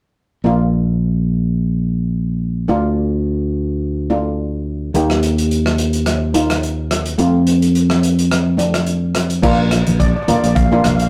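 A sunny, festive calypso fragment opens at 0.4 s with a shimmering, metallic steel pan playing accompaniment over a bright, growly fingered electric bass that sits up front; a mid-forward soul drum kit with a tight kick, hi-hat, rim click and crash cymbal joins at 4.9 s, and near the end low-tuned congas sit in the background as a second steel pan carries a brief upper-register melody from 10.0 s, the whole captured in a rough rehearsal-room sound with tube saturation and moderate reverb.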